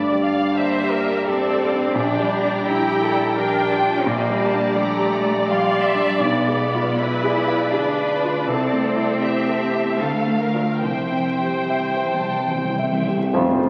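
Classical romantic music for piano and orchestra, this lush, passionate passage moves in a rubato 3/4 at roughly 69-87 BPM, cut from a longer piece and heard through the crackle of a very old 78 rpm record in a reverberant recital hall. Up front, a grand piano with long sustain carries the melody across a broad range, joined by a softer, smooth violin section in the background singing high above, while a rich, expressive chamber violin section adds a close second line. A focused viola section supplies lush bowed accompaniment, a clear cello section enters at 0.6 s as a bass voice, and a very quiet double bass section anchors the bottom, all strings played with vibrato. Very quiet bright cymbals and tam-tam arrive at 8.5 s, and hard-mallet timpani sound close and dry in a fill from 10.8 s as the harmony moves from G minor through a diminished chord toward C. At 13.3 s a brief band accent gathers a distant clarinet, a mellow close-miked bassoon, a vintage trombone section, a dark, barely audible French horn section and a soft-attack tuba.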